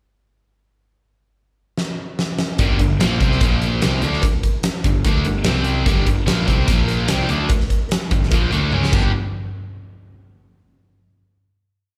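A drum fill on a huge arena kit, with a fat snare and bright cymbals, opens this driving, sunny classic rock piece at 147 BPM at 1.8 seconds. At 2.6 seconds a biting, double-tracked overdriven guitar launches a power-chord riff moving between G5, Bb5 and C5, doubled by a fuzzy, overdriven electric bass playing driving eighth notes, while a very quiet cowbell taps along. Heard as a live gig through the venue's PA with club reverb, the short piece closes on a final hit at 9.1 seconds.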